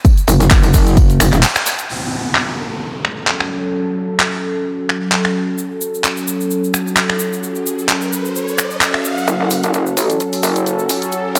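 Bass house at 130 BPM in F# minor, gritty and bouncy with swung 16ths, opens on a punchy electronic kick, a faint brushed jazz kit with a high-tuned snare and a grainy tube shaker, alongside a garage kit of snaps, claps, crash and bright hats that runs throughout. A saturated, metallic FM wobble bass with chorus and sidechain pumping growls briefly before a break at 1.4 seconds. Then a detuned sawtooth pad with a resonant filter swell settles on F#m alongside electronic downlifter and riser effects, and the bass returns for a build-up from 9.3 seconds, all in a lush hall reverb.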